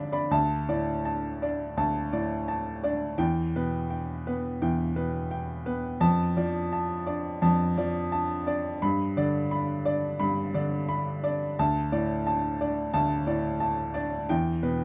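Neoclassical minimalist piano in a melancholic, intimate mood, played with a rubato feel in 4/4. A solo baby grand carries the whole 14.8-second excerpt, its clear, boxy tone sitting up front and spanning from D2 to B5 in light reverb. The harmony moves through D5, Em, Dm/F and G before returning to D5 and landing on Em at 14.3 seconds, as the fragment is cut from a longer piece.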